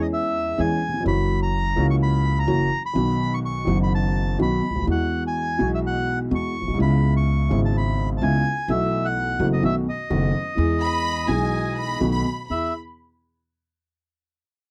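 A dark, slightly detuned upright piano sits up front with audible action noise, carrying the accompaniment in this playful, nostalgic tango excerpt with a loose rubato feel. A reedy, vintage bandoneon carries the melody over a woody, thumpy pizzicato upright bass on gut strings, and a smooth, bowed violin section with vibrato joins on a second line at 10.8 s. The sound is dry and close, like a 1970s studio recording.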